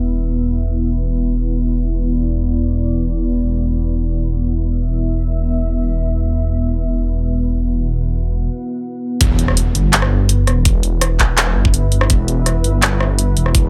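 Half-time drum and bass at 166 BPM in E minor, heavy and cinematic: a deep, moody pad of detuned unison sawtooth chords with chorus, built-in reverb and sidechain pumping sits over a rumbling, saturated, beating detuned saw bass from the opening to the end. A brief break at 8.5 seconds gives way at 9.2 seconds to a drop where an electronic impact hits, a knocking layered kick lands up front, and a small-room kit of handclaps, rim clicks and bright hats joins, the whole passage set in light digital ambience.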